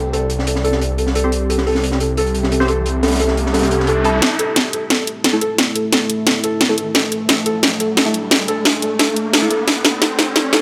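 An overdriven drum and bass kit sits up front from 4.2 seconds, its cracking snare and bright hats cutting through a dark, futuristic and mechanical take on technical drum and bass, with a knocking electronic kick layered very quietly beneath it. Before that point, a crunchy breakbeat kit carries the groove with a high-tuned snare and gritty, rolled-off hats and snare from a small room, joined by a swirling, thick detuned saw bass that is phased and tube-saturated. Throughout, a soft felt-muted upright piano plays intimate, mellow arpeggios through a delay, and a deep, moody ambient pad holds sustained chords with slow attack, chorus and its own reverb, both pumping against the sidechain. A nasal, band-passed chord stab flickers in the background with phaser, ensemble chorus and delay, while an electronic riser builds from 2.6 seconds on through the second section, where a drum fill and build-up also unfold. 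A lush hall reverb ties the parts together in this short excerpt cut from a longer piece.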